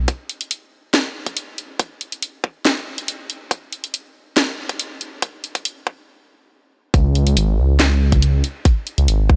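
A dark, detuned sawtooth bass rumbles and beats deep in the low end of this meditative, cavernous deep dubstep piece, sounding briefly at the very start and then returning for the drop at 6.9 seconds. From 0.1 seconds, a tight electronic kick and a garage kit of handclaps, hi-hat and cracking snare sit up front, driving a half-time build-up at 140 BPM that halts in a stop from 6.1 seconds, and both carry on through the drop. The sound is dry and close, a section cut from a longer track.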